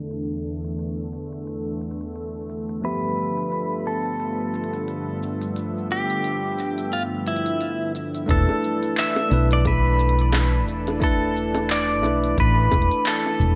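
A twangy pedal steel guitar carries the wistful melody up front from 2.8 seconds, its fingerpicked slide lines and volume swells trailed by analog delay, over a bell-like tine electric piano in dub echo and a lush, detuned unison pad with chorus, moving from E7sus4 to G13. In this smooth sunset chillout excerpt at 88 BPM with a 16th-note swing, a deep house kit of handclaps, smooth hi-hat and shaker sits under a filter sweep until 8.3 seconds. There a round, dark fretless bass enters up front with a deep electronic kick in the background, joined moments later by tight, high-tuned bongos, also in the background, all bathed in spring reverb within an echo-heavy mix.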